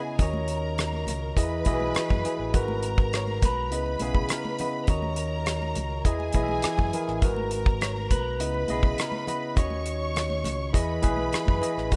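A straight 4/4 groove at 102 BPM, set by a dry, up-front 70s drum kit of hi-hat, tight kick and rim click with damped congas in the background, carries this silky, bittersweet fragment of 1970s-style soul, where an overdriven, punchy fingered bass and a barky, bright tine electric piano support a slightly broken-up, lo-fi electric guitar melody with phaser from 0.2 to 10.7 seconds, while a distant, lush studio string section adds a second line over D#m7, Emaj7, G#m9 and C#m9 chords in a rough home demo mix with light reverb.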